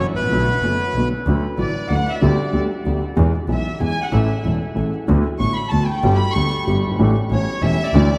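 A floating, sul tasto violin section carries this melancholic, dramatic tango fragment in D major, taking a solo from 1.3 s after a brief, reedy bandoneon melody, while a dark, intimate grand piano with audible action noise and a focused, bowed double bass with vibrato support the rubato 3/4 pulse at 189 BPM, all set in a vast cathedral reverb.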